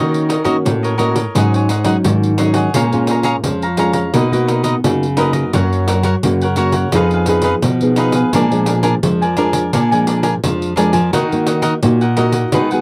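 Bittersweet yet lively, this short excerpt cut from a longer samba and choro piece moves at 86 BPM in a straight 4/4, set in E-flat minor and tuned slightly sharp to A4 = 443 Hz. A bright, crisp cavaquinho sits up front as picked accompaniment, while a fingerpicked nylon-string guitar with fresh strings fills in the harmony in a classical manner. A second nylon-string guitar carries the bass line with thumb-plucked notes, and finger squeaks on its strings add a human touch. The pandeiro joins at 0.1 seconds, its jingly, hard-handed sound compressed and saturated. The harmony travels from Ebm7 through Ab7sus4, Bbm7, Bmaj7 and Gb before turning through Fm7b5 and Bb7 to settle on Ebm at 11.1 seconds. The sound is a dry, close 1970s-style studio recording with little reverb, keeping the acoustic instruments intimate and immediate.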